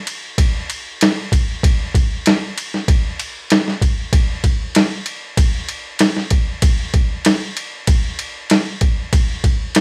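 A straight, swaggering 4/4 groove drives this short rock cut, carried entirely by an up-front, boom bap sampler-style drum kit whose gritty, pitched-down, compressed sound pairs a thumpy kick and medium-tuned snare with ride cymbal, all set in a small room that feels like a band playing live together.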